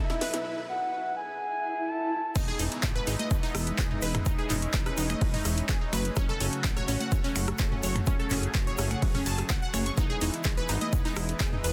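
At 126 BPM in a straight 4/4, this euphoric, uplifting progressive house excerpt in E major opens with a build-up, where a round, dark octave-layered synth lead sings over a thick, warbling unison pad, a bright detuned unison pluck arpeggio, a riser and swell, and an overdriven pop drum kit with a fat snare, metallic hats, handclaps and finger snaps, while a filter sweep runs across the lead until 2.4 seconds. At 2.4 seconds the drop lands, with a punchy, up-front electronic kick, a funky sawtooth-and-square analog bass with ring modulation and a very quiet acoustic studio kit with shaker, joined at 2.8 seconds by a tape-tinged deep house kit of congas, rim clicks and toms in the background, all moving over chords that shift from B7sus4 to Emaj7, F#m and back. The pad, pluck, bass and deep house percussion pump against the sidechain, and the dense, heavily limited master sits in light reverb.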